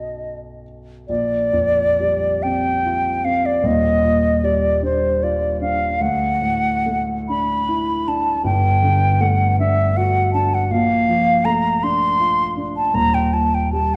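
A worn, warbling cassette sound with drifting pitch sits under a wet scoring-stage reverb, wrapping this dreamy, luminous impressionist duo cut from a longer piece. A hollow, pure silver concert flute carries the melody up front with vibrato and tongued notes, while a dark, intimate grand piano accompanies with audible action noise, moving rubato in 6/8 at 44-54 BPM. The Bb major harmony drifts through Ebmaj9 at 3.6 seconds, D69 and Gsus2 before resting on Eb at 12.9 seconds.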